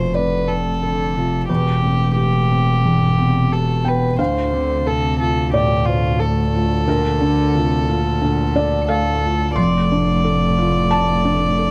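Opening at once with all four parts together, this hopeful, intimate neoclassical excerpt moves at a rubato 89 BPM in 4/4 over F6, Cmaj7/E, Dm7 and Bbmaj7/D, with a soft, floating sul tasto violin melody up front, a distant bowed cello second line in the background, a felt-muted upright piano accompaniment whose mellow tone carries audible action noise, and a close, airy-bowed double bass with light vibrato, all set in a moderate booth ambience.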